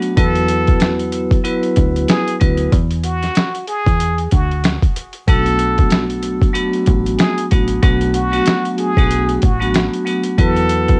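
Gritty, pitched-down sampler drums drive this moody boom-bap hip-hop fragment, with a thumpy kick, a medium-tuned snare and hi-hat sitting up front, compressed and overdriven with a crunchy 12-bit edge. The groove moves at 94 BPM in 4/4 with a loose swing on the sixteenths, in B dorian, and a break arrives at 2.7 s. A vibraphone struck with hard mallets rings out metallic and boxy from the start, its slow motor vibrato filtered and dulled by cassette tape. From 0.2 s a plunger-muted trumpet takes the solo melody in a jazz style, bright yet breathy, with wah-wah inflections, light vibrato and scooped notes, colored by filtering, tape and an analog delay. Underneath, a deep dub fingered electric bass enters at the same moment, dark, round and punchy with a foam-muted thud. The harmony shifts from Esus2 to Bm7 and back, and the whole cut carries the light reverb and lo-fi character of a home cassette recording.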